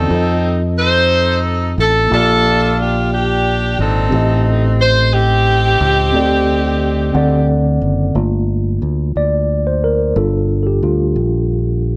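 Soulful and fervent, this short slow gospel passage from a longer piece moves at 60 BPM in a straight 6/8 in G minor. A clear, present saxophone section carries the melody with pop-style vibrato, sitting up front until it drops out at 7.5 seconds. Underneath, a mellow, clean tine electric piano heard through its built-in speakers provides accompaniment across a broad range. It then takes a solo from 8.2 seconds to the close at 12.0 seconds. A fingered electric bass, punchy, direct and amped, stays prominent in the low register throughout with a warm tone. The harmony moves from F7 through Bb6, Am7b5, D7sus4 and D7 before settling on Gm7 and Gm9, all set in a light, small-room reverb.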